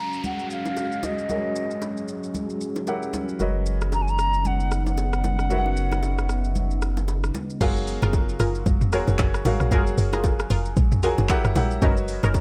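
Soulful, warm amapiano, cut from a longer piece and swung on the sixteenths, opens with an airy, mellow silver concert flute melody with vibrato and delay over a clear concert grand piano, a moody, detuned ambient pad pumping with sidechain and chorus, and an electronic downlifter, all beneath a filter sweep. A deep house drum kit with a deep kick, metallic hats and vintage 12-bit sampler grit drives throughout alongside saturated congas and bongos, while a thick sub bass holds the low end from 3.4 s. At the drop at 7.6 s the pad gives way to bright, wave-folded chord stabs with chorus and delay and a tight, punchy log drum bass sitting up front.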